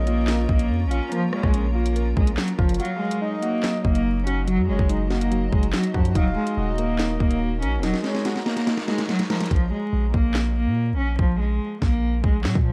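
A half-time drill groove at 143 BPM drives this dark, menacing hip hop piece. An electronic kit punches up front with a hard-clipped kick, sharp snare, bright hats, handclaps and rim clicks, pausing for a break at 2.8 s and rolling through a fill into 9.5 s, where the hi-hats fall silent, while a deep, sine-toned 808 bass holds long, decaying notes. Over Bbm, Gb6 and Ebm7, a single bowed cello carries the melody with a soft, pure sul tasto tone and a touch of delay, shadowed by a breathy, flute-like synth lead with vibrato and chorus, as detuned, warbling lo-fi keys and a cloudy granular pad sit beneath until 9.5 s, with vinyl crackle and a dark, warm digital ambience coating the mix.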